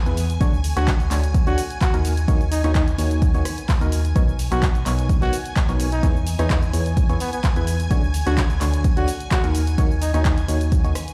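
Shimmering vintage string-machine violins open this joyful, euphoric piano house excerpt, soon joined by a biting, barking FM electric piano riff with chorus, phaser, tremolo, delay and a cassette-tape grain, a hollow, dark organ-like FM bass, a punchy tape-warm analog drum machine of cabasa, handclaps, hi-hat and rim click over a punchy electronic kick, and from 0.8 seconds a mellow jazz-style trumpet solo with scooped notes and delay, with the strings, keys and bass pumping to the kick, all heard as if played over a big sound system in a bare stone room.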